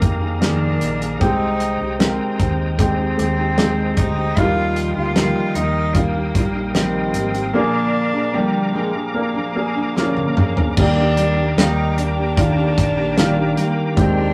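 A tender, hopeful pop ballad fragment opens at once on a dry, up-front 70s drum kit with fat snare and tight kick, a short-sustained grand piano, a dark, foam-muted fingered electric bass, fingerpicked nylon-string guitar arpeggios set in the background, a reedy, lightly overdriven tonewheel organ with key click and fast rotary speaker holding chords, and a pure, distant bowed cello carrying the melody, heard through a rough rehearsal-room sound with tube saturation, until a drum fill at 10.0 s leads into a new section at 10.8 s.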